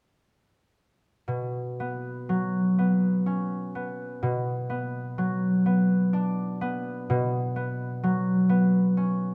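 A fingerpicked concert harp enters at 1.3 seconds, its ringing low-to-middle-register accompaniment sitting up front in an unhurried, rubato 6/8 that feels pastoral and dreamy. Close, detailed microphones catch the acoustic harp's warm tone while a wet recital hall reverb gives each chord a lingering glow, moving gently between suspended and slash chords until the passage, cut from a longer classical piece, ends at 9.3 seconds.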